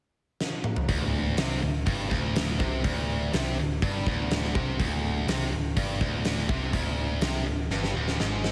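A fat-snared arena drum fill opens this driving, menacing hard rock excerpt at 0.4 s, then at 0.9 s a bright, double-tracked distorted guitar riff with slapback echo and a dark, round, overdriven picked bass take up a D7sus4 chord over punchy kick, hi-hat and toms in a big, lush hall sound, before another drum fill arrives at 7.7 s.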